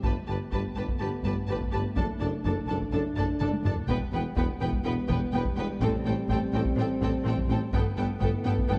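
A taiko ensemble struck with heavy sticks drives this heroic, relentless cinematic passage, its acoustic, small-room sound breaking into a brief fill from 3.4 to 3.9 seconds. Above it, a lush symphonic violin section carries the melody high in its range with expressive vibrato and a soft attack. A second, studio violin section traces an even, smooth line beneath, while a distant viola section fills in the accompaniment. The low end is rich and weighty: a woody, very quiet cello section, a symphonic double bass section in the background and a mellow solo tuba share the bass. A dark French horn section sustains chords in the background as the harmony moves from Gadd9 through D/F#, Em and Am7 back to Gadd9. Light reverb and a dark, warm production give this epic orchestral film-score excerpt a full, enveloping sound.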